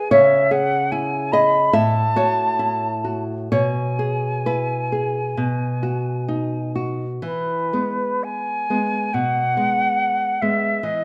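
Set in a free, rubato 4/4 that drifts between 57 and 74 BPM, this brief romantic duo for flute and classical guitar unfolds in E major with a tender, serene mood. The silver concert flute carries the melody between B4 and B5, its airy metal tone shaded with vibrato and tongued notes, sounding at once distant and up front. Beneath it, the nylon-string guitar provides fingerpicked accompaniment from A2 up to E5, its small acoustic voice close at hand, with the odd finger squeak audible. The harmony moves through C#m, F#m7/A and E/B to B before settling on E as the second section begins at 7.2 seconds. Both instruments play throughout the 11.0-second passage, which is cut from a longer piece and set in a moderate recital hall reverb that lends a gentle glow.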